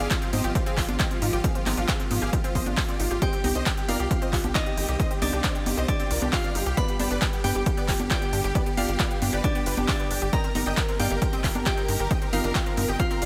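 A huge, detuned supersaw carries the melody in this euphoric, driving uplifting trance excerpt, its thick compressed tone pumping against the sidechain and trailing dub echo. Beneath it, a punchy overdriven kick and an up-front dance kit of congas, handclaps and crisp hi-hat drive the beat, while a tight, saturated sawtooth sequencer bass also pumps with the sidechain. A round analog pluck plays chorused arpeggios in the background over very quiet, focused bowed strings holding chords; a glassy FM bell enters at 3.2 seconds with a second line, all set in a digital ambience.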